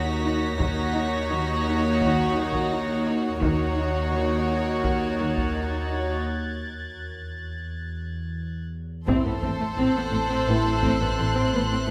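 Soft-attack, sul tasto symphonic violins carry a floating melody and a second line over dark, woody violas in this tense, uneasy suspense-film cue in Eb minor at 85 BPM. Beneath them sit a rich cello riff, a bowed bass line from cellos and double basses, and an evolving, chorused analog drone, while a glassy FM pad with chorus and built-in reverb hovers in the background and an intimate chamber violin section adds a high, vibrato texture. Hard-stick taiko drums enter at 0.6 s, a drum fill leads out of a break, and mellow French horns add sustained chords from 9.1 s as the harmony moves to Am, all in a moderate scoring-stage reverb.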